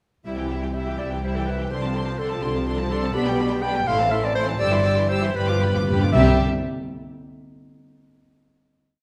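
A bright solo clarinet carries the tune in this brief, spirited and cheerful classical-period movement for symphony orchestra, set in a lilting 6/8. Above it, the upper violins play the melody with a soft, floating sul tasto tone. A second, richer violin section sits further back and shares a rocking two-note figure and sustained chords with the warm violas. Intimate cellos with light vibrato mark the bass on the beats, and the double basses double that line from below. Timpani struck with hard mallets on calf heads enter late in the background for an articulate fill at 5.4 s, leading into the final chord at 6.1 s, all heard through a reverberant recital-hall ambience.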